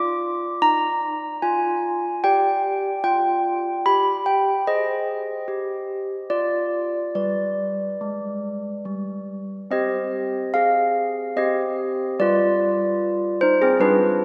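A solo set of handbells opens this short classical fragment, ringing clear and mellow with soft clappers, sitting up front in a steady three-beat metre. The solemn, wintry tune moves through dark harmonies that give way to an unharmonised moment at 6.3 seconds before settling toward C minor at 9.7 seconds, where a new section begins. A long, wet church reverb lets each bell hang in the air.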